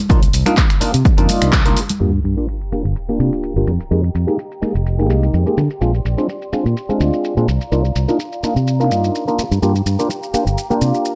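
Sensual and nostalgic, this filtered disco house excerpt moves at 126 BPM in C minor with a light swing, built on a punchy, overdriven kick, dry analog drum machine hats, snaps, claps, shaker and crash, and ringing tambourine and congas. The kick, tambourine and congas fall away shortly after a band accent at 1.5 seconds, while the drum machine carries on. A bright, up-front fingered electric bass and a stringy, phased clav carry the groove through sidechain pumping and low-pass filtering, cycling over chords such as Cm11, Gm7, Fm11 and Bb9. At 2.0 seconds a sub drop hits as a dark, intimate violin section with 12-bit sampler grit enters softly in the background, while a filter sweep runs across the drums and the mix until the end.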